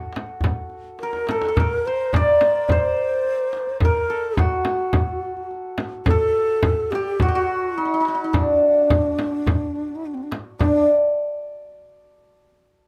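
A shimmering, hammered santur leads this soulful, melancholic Persian modal ensemble piece in D dastgah homayun at 106 BPM, joined by tight tombak with hard hands, a small, dry frame drum from 0.2 seconds, a drum fill at 1.0 seconds, and a breathy, mellow low ney with vibrato adding an expressive second line from 1.0 seconds, all captured with close, detailed microphones and light reverb in a cut from a longer piece.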